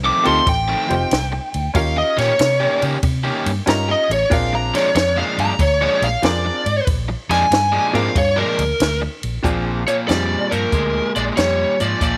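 A small room with light reverb gives this fragment of a longer electric blues shuffle a close, intimate sound, and its swung feel comes across as laid-back and swaggering. Up front, a lead guitar through a small cranked amp takes a solo that runs until 9.4 seconds, its picked, overdriven tone sitting high over the band. Beneath it, a compressed rhythm guitar repeats a riff while a vintage fingered electric bass adds a round, foam-muted low end. A compact cocktail drum kit plays dry and natural, with dark cymbals on hi-hat and ride, a high-tuned snare and a punchy kick. A bright, woody upright piano, slightly detuned, comps through the changes from F7 to Eb7 to Bb7 before dropping out at 10.5 seconds.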